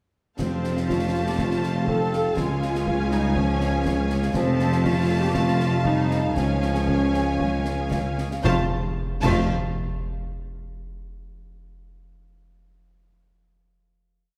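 A rich violin section carries the heroic melody of this complete cinematic adventure cue, its bowed vibrato lush and focused. Beneath it, a second violin section with a smooth top, a close viola section doubling the tune in unison and a distant, roomy clarinet shadowing it in sixths fill out the sound, while a French horn section holds tight, mellow sustained chords in the background. The low end rests on a bright studio cello section with sustained bass notes, joined by a soft-attack tuba and a bowed double bass section doubling the bass line, as a concert harp adds ringing, fingerpicked sweeping arpeggios. A marching snare over a bass drum on the beat, with brilliant cymbals, drives the theme, and single timpani strokes on bass notes mark the opening and the arrival of the final chord near 8.4 seconds. The music slows down from 3.4 seconds, and the harp rings on alone until 10.6 seconds inside a wet scoring-stage reverb.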